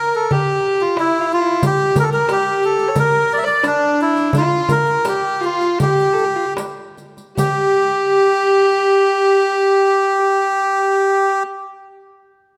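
A reedy, nasal melodica carries the melody up front from the very start of this melancholic, hypnotic excerpt of an Arabic maqam ensemble piece, its breathy tone having a slightly plastic character. Beside it, a single bowed violin plays a second line with light vibrato, its warm, earthy bite tempered by a smooth top. A small, crisp metal-shell darbuka enters almost at once, its high, acoustic tone compressed and saturated. A riq's bright jingles, played with soft hands, join at 1.6 seconds from the background, and from there the pace slows until 7.4 seconds, where the music moves into a new section. Both percussion parts stop at 7.8 seconds, leaving melodica and violin to finish together, all set in a moderate concert hall reverb.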